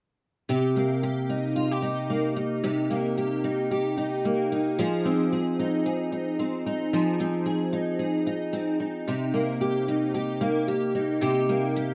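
A rough home-demo sound with a moderate studio reverb frames this short cut from a longer indie pop piece, lonely and mellow in mood. A picked steel-string acoustic guitar plays alone and up front from 0.5 to 11.9 seconds, its auditorium-sized body giving a warm tone. An analog chorus and a warbly pitch drift lend the guitar a slightly wavering character. The tempo sits at 112 BPM in 4/4 with a swung sixteenth-note feel, in C minor, and the guitar moves between C3 and Ab4. The harmony moves from Cm7 to Fm7 at 4.8 seconds, then a new section begins at 9.1 seconds, returning to Cm7.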